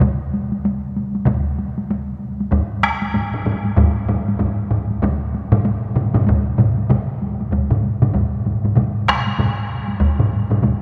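A long cathedral reverb of 4.7 seconds, captured in a church or concert hall, surrounds this powerful, driving Japanese traditional taiko ensemble excerpt at 96 BPM in 4/4 with a 60% swing on sixteenths, where a close solo taiko struck with hard sticks plays alongside three heavy-stick taiko ensemble parts (one up front with a small-room sound, two close and dry), the last of which joins at 2.5 seconds before the music moves into a new section at 7.5 seconds.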